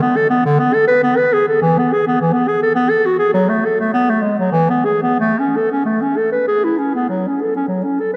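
Classical, baroque-style fantasia for unaccompanied clarinet in A major, a dance-like, flowing passage in 3/4 with a rubato feel around 87-106 BPM, where the clear, up-front solo clarinet plays from 0.0 to 8.2 seconds between D3 and B4, bathed in a long, wet cathedral reverb, in a short cut from a longer piece.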